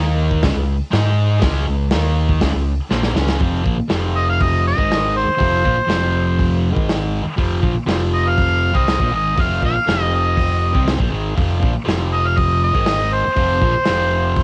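Garage rock in F minor at 120 BPM, raw and gritty, cut from a longer piece and captured as a home cassette recording with light reverb. A bright, double-tracked fuzz guitar riff and a round, amped fingered electric bass drive it from the start, joined at 0.3 seconds by a crunchy breakbeat drum kit with a punchy kick and a rolled-off top, whose fill at 2.9 seconds leads into the second section. At 4.2 seconds an overdriven harmonica steps up front with the melody, its light vibrato and tongue slaps set in plate reverb.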